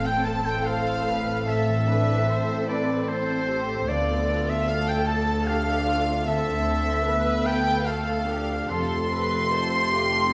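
Sorrowful and moving, this cinematic fragment in a rubato 3/4 drifts through Amadd9, Dm7 and Fadd9, with a violin section carrying the soft, sul tasto melody in the background while a second, up-front violin line joins a clear, punchy oboe solo and a distant, silvery flute above it. Beneath them, dark, woody violas provide lush accompaniment, a distant French horn section holds dark sustained chords, and a very quiet harp rings out fingerpicked arpeggios. Cellos and rich double basses anchor the bass with a pure, floating tone, all set in a wet scoring-stage reverb.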